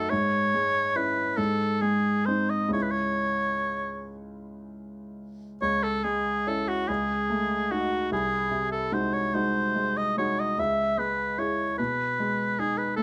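In a rubato 6/8 sway, this solemn, melancholic romantic classical excerpt pairs a warm oboe, singing the melody up front with light vibrato, and a clear, intimate grand piano whose audible action noise lends closeness to its accompaniment beneath the line, all in light reverb as the phrase unfolds twice across 13.0 seconds.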